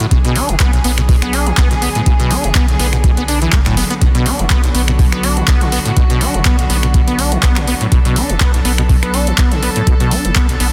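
Trippy and raw, this acid house excerpt sits on a B minor chord at 123 BPM with a light 16th-note swing, driven by a deep, tape-warm electronic kick that dominates the mix alongside a dry analog drum machine of finger snaps, handclaps and metallic hi-hats, both treated with studio reverb. A squelchy, resonant sawtooth acid bass riff with a filter sweep runs through ensemble chorus, tape echo and sidechain pumping, while a round, dark analog bass entering at 0.1 s anchors the low end with its own pumping. Above them, a rich studio string section holds reedy, gut-toned bowed chords with light vibrato, also shaped by sidechain pumping, all within a dense, heavily limited modern master.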